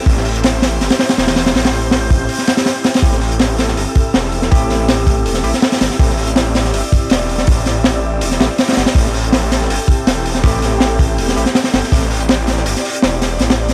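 Drum and bass with a jungle edge, this atmospheric, raw clip runs on a crunchy breakbeat kit, punchy and dark with a high-tuned snare, sitting up front beside a thick, menacing detuned saw bass that beats and saturates under a steady Am7. Behind them, an airy, breathy pad holds chorused chords while a mellow, wind-like tuned noise texture drifts high above in its own reverb. A bell-like tine electric piano drops in with clean, dub-echoed stabs from 3.0 to 6.1 seconds and again from 8.4 seconds, all captured in a dry, gritty hardware sound.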